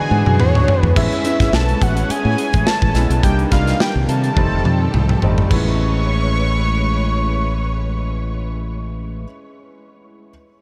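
A drum fill opens this glossy, upbeat 1980s jazz-funk pop excerpt in A major at 106 BPM with a light sixteenth-note swing, as a fat, detuned analog lead carries the melody through phaser and tape echo over a clear, intimate grand piano with audible action noise and analog chorus, while a lush, bowed string section holds sustained chords in the background. A bright, growly fingered electric bass sits up front beside a punchy acoustic drum kit whose rolled-off top keeps the hits warm, and a second fill at 4.4 seconds leads into a new section where the drums drop out at 5.7 seconds. The chords move from E9 through Amaj9, Cm7 and F9 before returning to Amaj9, all set in a dreamy mix soaked in huge ambient reverb, with the piano ringing on alone until 10.3 seconds.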